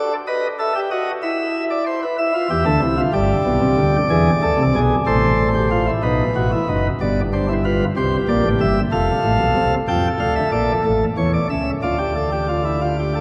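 Solemn and contemplative, this baroque-style three-part fugue for chamber organ moves at 62 BPM in a straight 6/8, beginning in A minor and shifting to D minor at 9.9 s. The organ plays alone on a full principal chorus, its chamber voicing sitting up front with chiff on the attacks, spanning deep bass notes to high upper lines. A long, wet cathedral reverb and a dark production surround this short cut from a longer piece, which passes through chords such as B7, E7, C7 and F before settling on D minor.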